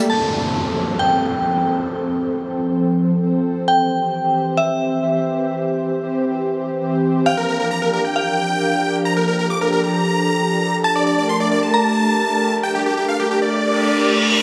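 A straight 4/4 pulse at 134 BPM drives this uplifting, euphoric trance excerpt in F major, moving through F, C, Bb6 and Gmadd9. A glassy, crystalline FM bell carries the second line with chorus and dub echo until 12.3 s, while an up-front electronic downlifter opens the passage and a reverse cymbal closes it at 13.7 s. At 7.3 s a huge, detuned supersaw lead takes the melody, bright and compressed with a sub octave, low-pass filtering and tape echo, all bathed in a vast ambient reverb.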